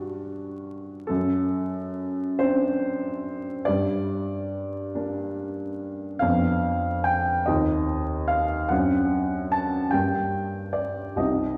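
Lilting 6/8 phrasing pulled freely by rubato carries this wistful, yearning romantic nocturne, a short fragment of a longer piece for a solo upright piano with a woody, open tone that sits up front, ranging from deep bass to bright upper notes through a pleading chord progression that keeps returning home to its minor tonic, all heard from further back in a reverberant recital hall beneath a layer of vinyl crackle.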